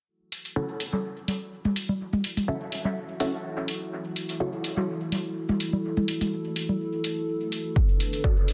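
A muted, detuned dub chord stab sits up front with a quick filter pluck, its phaser and dub echo trailing off as it plays from 0.6 to 4.5 s and returns briefly near the end. This short excerpt of hazy, hypnotic dub techno in F# minor moves at 125 BPM in 4/4, with a slight swing on the sixteenths, and rests on F#m7 before shifting to Bm7 at 7.8 s. Beneath it, a dark, moody analog pad holds sustained chords with a slow attack and long release, softened by subtle chorus and breathing with sidechain pumping, while filter sweeps run through both pad and stab. A tape-warm electronic hi-hat, re-recorded in a small room, sits up front from 0.3 s, and electronic congas and toms add analog percussion with pumping and echo until 6.8 s. A punchy kick drum arrives only at 7.8 s, the loudest part in a dense, heavily limited mix wrapped in a lush hall reverb.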